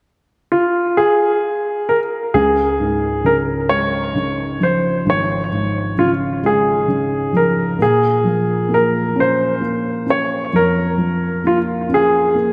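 A clear, polished baby grand piano carries the melody from 0.5 s, sitting up front with a touch of tape echo in this heartfelt, romantic pop ballad in six-eight. At 2.3 s a felt-muted upright piano joins underneath as accompaniment, its dark, boxy, thick-felt tone intimate and mellow, with a subtle chorus. The whole dreamy passage, cut from a longer piece, is soaked in a wet plate reverb.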